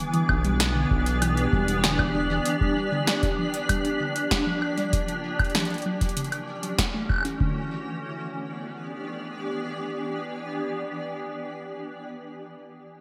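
This IDM excerpt moves at 97 BPM in a straight 4/4 in E dorian, with a melancholic, glitchy mood and a bright 1980s-style digital sheen bathed in a lush hall reverb. A cloudy, granular pad sits up front holding sustained chords through Em7, Gm7 and F#m7, its blurred, evolving texture thickened by ensemble chorus and its own built-in reverb, and it carries on alone after the other parts fall away by about 7.7 seconds. Beneath it, a harp-like synth pluck plays soft, ringing arpeggios in the background, its mellow tone roughened by 12-bit sampler grit and spread by chorus and delay. An electro analog drum machine supplies a punchy snare, metallic hi-hats and woodblock with gated reverb and digital delay, joined by a deep, tape-warm electronic kick. A dark, detuned saw bass rumbles and beats with saturated weight, but only briefly, from 0.3 to 2.4 seconds.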